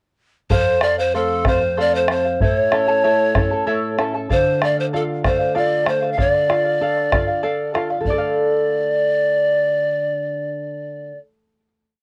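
A breathy pan flute, charango, nylon-string guitar and bombo all begin together at 0.5 s in this short, complete Andean folk piece in D minor, moving in a straight 6/8 at 64 BPM with a mood that is both festive and wistful. The bamboo pan flute sits up front with the melody, its straight tone, soft attack and chiff carrying motif-based hook phrases with lifted highs and an expressive touch. Beneath it the charango shimmers with fingerpicked double strings, some octave-doubled, and rhythmic strumming in open chord shapes, while the nylon-string guitar, fresh-stringed with the odd finger squeak, supplies fingerpicked bass notes and chord figures. The deep, dark bombo keeps an evenly spread pattern close to the listener until 8.3 s, just as the other parts settle on a final chord from 8.1 s, the charango ringing last to 11.7 s. The chords move from F to A to D minor, and the whole has the intimate feel of a home cassette recording, with the pan flute, charango and guitar carrying a cassette-tape coloring inside a wet booth.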